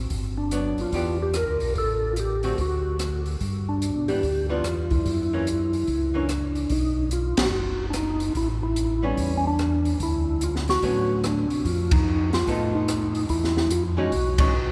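A round, lightly overdriven tonewheel organ bass opens this swinging, soulful soul jazz organ trio excerpt. It is joined almost at once by an up-front acoustic jazz kit with dark cymbals, a high-tuned snare and a boomy kick, and by a soft, flute-like organ melody with third-harmonic percussion, both organs turning through slow rotary speaker and chorus vibrato. A clean, picked hollow-body archtop guitar comps quietly, falling away between 6.3 and 9.0 seconds as the harmony moves into richer extended chords, while band accents punctuate the second half and a long cathedral reverb fills the hall around the trio.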